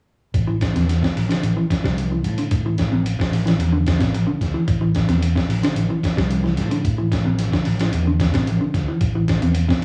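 A small room's ambience and light reverb frame this short, driving, hypnotic afrobeat clip, which rides on a single A minor chord throughout. A gritty, compressed sampler-style drum kit sits up front with a thumpy kick, fat snare and hi-hat, starting together with a warm, amped fingered electric bass at 0.3 seconds. A dark, slightly broken-up electric guitar enters at 0.5 seconds with fingered arpeggios, sitting slightly lower in the mix.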